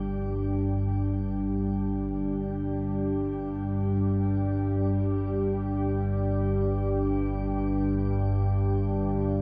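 At 0.0 s a low analog drone and a sweeping resonant pad rise together over a G5 chord, opening this dark, unsettling ambient drone fragment cut from a longer piece. The drone sits deep in the G1 to G2 range, its detuned sawtooth and pulse waves slowly shifting through pulse-width modulation under a lush chorus, giving it a mellow, up-front heft. Above it, the pad holds sustained chords between G3 and G4, its wave-folded, resonant tone drifting through a filter swell, phaser and chorus before dissolving into shimmer reverb. From the start, faint arpeggios on a bronze singing bowl, struck with a felt mallet, ring with slow metallic beating until 8.7 s, while the drone and pad carry on to 9.4 s. In free time and tuned to A4 = 439 Hz, the whole fragment is bathed in a huge, wet reverb with a long tail and a dark, rolled-off top end.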